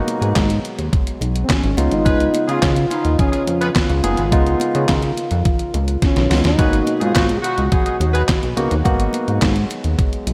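A chorused synth bass sits up front in this late-night, danceable early-eighties boogie funk excerpt at 106 BPM in G# dorian, its glossy, evolving pulse-wave and sawtooth tone shaped by a filter pluck with a fast attack and a dark, sustained body. A detuned 8-bit drum machine supplies a thumpy kick, fat snare, hi-hat and handclaps in a straight 4/4, tape-tinged and close, with a short drum fill midway. Very quiet, high-tuned congas with thin, damped skins add bright percussion. A barky tine electric piano, lightly overdriven through a combo amp, plays accompaniment over G#m7 and C#7 and stops at 9.5 seconds, while a mellow brass ensemble holds smooth chords in the background. At 1.4 seconds an expressive synth lead enters with a soft attack, vibrato and chorus, blending sawtooth and triangle tones trailed by diffuse ambient delay, and from 2.1 seconds a tight, warm horn section with octave doubling adds a second line, all within a lush hall reverb that gives the mix a dreamy haze.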